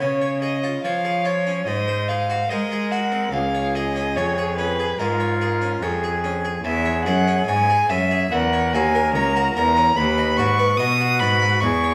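A moderate recital-hall reverb gives this serene, flowing baroque-style sonata movement with continuo a natural sense of space. It moves at 72 BPM in 4/4 with a rubato feel, settling into B major from 6.6 s. An airy, close-miked concert flute carries the melody with vibrato and a soft attack, while a warm, smooth solo violin sings a second line and sits up front, over a full, plucked Italian-style harpsichord with two sets of strings and a clear, evenly bowed solo cello on the bass.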